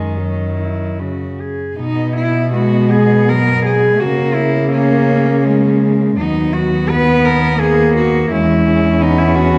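Four bowed cellos begin together in a tender, serene classical passage in B major at 83 BPM in a rubato 3/4, with an up-front cello singing a pure, floating melody sul tasto above a quieter background second line and a soft-attacked accompaniment, while a dark, intimate bass cello with vibrato sits close beneath, the whole warm, dusky blend resonating in a reverberant recital hall.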